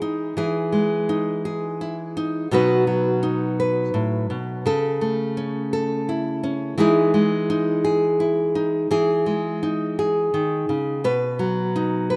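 A rough home-demo sound bathes a lone nylon-string guitar in a wet plate reverb with a long tail, keeping the bright, full-bodied instrument up front. This gentle, hopeful folk passage in 3/4 is fingerpicked in a classical manner from 0.0 to 12.2 seconds, drifting through Emaj7, B and A/C# before returning to Emaj7 and closing on B. It is cut from a longer piece.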